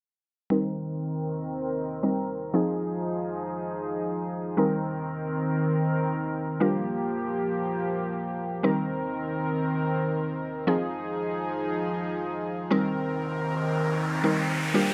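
In free time, this confident, bittersweet pop excerpt in C minor (tuned to A4 = 443 Hz) sets a woody, round, mallet-like synth pluck with chorus up front over smooth, detuned supersaw chords through a filter sweep, moving through Cm7, Fm7 and Gm7 in a wet studio reverb and a rough home demo mix, until an electronic riser enters at 13.1 s.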